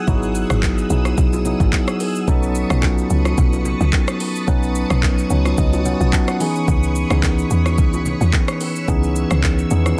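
A dense, heavily limited modern mix with little reverb opens this soulful, relaxed amapiano excerpt, cut from a longer piece and moving at 109 BPM in 4/4 with a gentle 16th-note swing. A mellow, clean tine electric piano sits up front, carrying the accompaniment through Emaj9/G#, B9 and C#m9 chords, and steps forward with a fill from 5.0 to 6.7 seconds. Beneath it, a woody, punchy log drum bass delivers fast-attack, decaying notes with a noise layer, giving the low end its percussive bite. The electronic afro-pop drum kit is also up front, pairing a deep kick with metallic hi-hats, handclaps, rim clicks and shaker. Further back, a vintage, warbling organ-string pad holds soft-attack chords with ensemble chorus and sidechain pumping, while very quiet congas and bongos add bright, saturated hand percussion.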